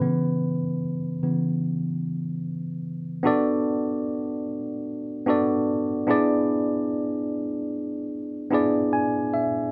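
A mellow tine electric piano carries this short soul excerpt alone, its worn, slightly out-of-tune voice sitting up front through a combo amp with a clean, warm tone. The mood is cinematic and bittersweet at an unhurried pace, as the piano moves from C#m7 to Bm7 and then E7, opening with a solo passage and closing on a fill from 8.5 seconds. A moderate studio reverb gives the sense of a band playing live in one room.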